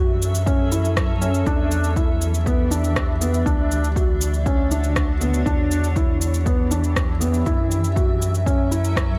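Light reverb frames this excerpt of piano and strings electronica at 120 BPM in E dorian, a moving, hypnotic piece in straight 4/4 that cycles through F#m7, Em7, Dmaj7 and back. A felt-muted upright piano plays a soft, dark riff with audible action noise and tape echo. A blurred, evolving granular cloud pad holds sustained chords with built-in reverb and sidechain pumping, while a round analog bass with its own pumping fills the low end, an electronic shaker and rim click enter at 0.2 seconds, and a punchy, layered electronic kick drum, re-recorded in a small room, joins at 0.5 seconds.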